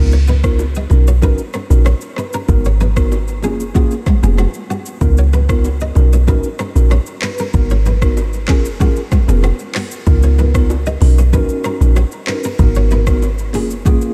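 Set in a digital ambience, this short afrobeats cut from a longer piece has a hypnotic, mellow mood at 95 BPM in a straight 4/4, tuned slightly low to A4 = 439 Hz. Up front, a deep log drum bass with a round, percussive FM tone, a noise layer, a fast attack and a dark decay anchors the low end, alongside an electronic afro-pop drum kit with a deep kick, metallic hi-hats, handclaps, rim clicks and shaker. A clean tine electric piano, heard as if through built-in speakers, supplies mellow, warm accompaniment, while a fingerpicked nylon-string guitar with a full-bodied classical tone plays a riff coloured by analog chorus and tape echo. Very quiet, band-limited congas and bongos add bright, vintage hand percussion beneath. The harmony cycles through C#13, Bmaj7, G#m7 and F#maj7, and the progression carries on into a second section at 10.1 seconds.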